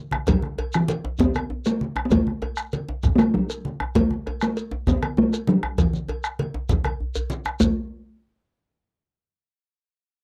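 A dry, close 1970s-style studio sound with light reverb frames this earthy, festive West African drum ensemble piece in 12/8 at 131 BPM, cut from a longer work, where a resonant, up-front talking drum carries the melody between E3 and B3 over a round, saturated bombo, bright, damped, low-tuned congas, a medium-tuned djembe, a metallic cowbell and a grainy, mellow shekere, with drum fills at 0.0 seconds and from 6.8 to 7.6 seconds before all the parts stop by 7.8 seconds.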